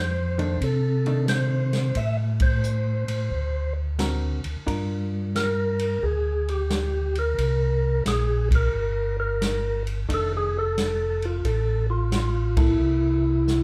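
A relaxed swing on the eighth notes at 89 BPM in 4/4 carries this swinging, bluesy soul jazz organ trio in F major, cut from a longer piece. One tonewheel organ states the melody between E4 and E5 with a soft, flute-like, clean tone, third-harmonic percussion, audible key click and a fast rotary speaker. A second organ holds the bass from F1 to C3, round and dark, with chorus vibrato and a slow rotary speaker, sitting slightly louder and up front. From 0.4 s a compressed, shadowy hollow-body electric guitar adds fingered accompaniment lower in the mix, alongside an acoustic vintage kit with punchy kick, medium-tuned snare, hi-hat and ride. The band hits three shared accents over a progression moving from F6 through Am, Daug7, Gm7 and C5 back to F6 and C6, and a drum fill lands at 13.5 s. Playing live together in one room, the group is framed by a moderate large studio reverb that gives the performance a natural, roomy presence.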